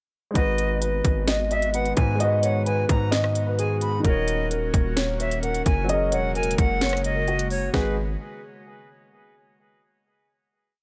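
A warm grand piano opens this brooding, hard-hitting trap piece with held, spread chords in the background. At 0.4 s it is joined by a dark, boxy second piano looping the melody, a bright, reedy flute counter-melody with vibrato and delay, and an airy, detuned pad with chorus. Up front, a crisp half-time trap kit with a hard-clipped kick, sharp snare and fast hi-hat rolls drives a saturated 808 bass whose long sub notes follow the kick with pitch slides, before the hook settles into a final chord at 7.7 s in a small room.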